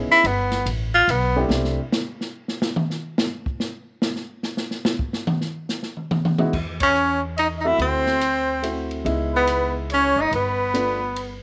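A snug room ambience surrounds this playful, swinging fragment of small-group swing and bop, moving at 143 BPM in 3/4 with a lilting swung eighth-note feel. The clear, punchy tenor saxophone sits up front with light vibrato, scooped notes and a smooth top, joined briefly at the start by a warm baby grand piano with long sustain and a woody, thumpy pizzicato upright bass on gut strings. From 1.5 seconds the open acoustic drum kit takes a solo, with dark, smooth cymbals, a medium-tuned snare, toms and a boomy kick placed close to the listener. The rhythm section returns around 6.5 seconds and hits an ensemble accent at 6.7, and the saxophone resumes the melody at 6.8 over rootless and extended harmony such as D9 and C#m9. A distant, roomy trumpet adds a second line above the saxophone, its warm tone and light vibrato tinged with slapback echo as it rests in the background.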